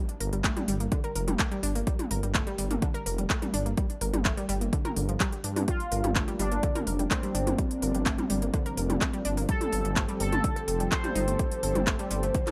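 An overdriven electronic kick drum sits up front, deep and layered, its punch carried by the reverberation of a large room as it drives this cinematic, dramatic melodic techno cut at 126 BPM in straight 4/4. Around it, a techno drum kit adds handclaps, toms and smooth hi-hats, with a smaller room's tighter air, while a dark, detuned saw bass rumbles and beats between F1 and G2, saturated and sidechain-pumped against the kick. A round analog pluck spins bright, decaying arpeggios through chorus and analog delay, also pumping with the sidechain. At 5.7 seconds a juicy, resonant polysynth enters with a filter-swept, ring-modulated sawtooth melody between C4 and C5, trailed by tape echo. A lush, warbling vintage unison pad arrives at the same point, holding thick sustained chords in the background over a harmony that rests on Fsus2 before settling onto F at 9.5 seconds. The whole has a dry, gritty hardware character wrapped in digital ambience.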